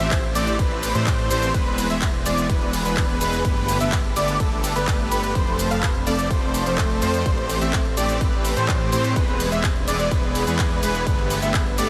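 Festival progressive house with a powerful, euphoric lift, this short cut rides a steady 126 BPM pulse as up-front supersaw chords play a huge, lush riff over a thick detuned saw bass, both pumping under sidechain, while a bold, nasal unison lead spins warbling arpeggios through analog delay. A punchy electronic kick, re-recorded in a small room, anchors a house kit of handclaps, tape-warm hi-hats, ride cymbal and shaker, and a barely audible swell slips in around 6.9 seconds. The whole mix is soaked in a long, dreamy ambient reverb as the chords cycle through Am7, E, Gadd9 and F.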